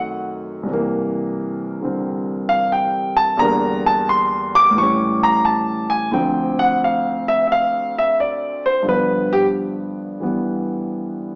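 A solo grand piano, intimate and up front with audible action noise and long sustain, carries this sophisticated, warm jazz passage at 88 BPM in a swung 4/4 in C mixolydian, moving from F#dim7 through C7, Em7b5, A7 and Dm7 to G7 across a register from C2 to D6, all set in a wet large-studio reverb with a small-speaker sound in a short cut from a longer piece.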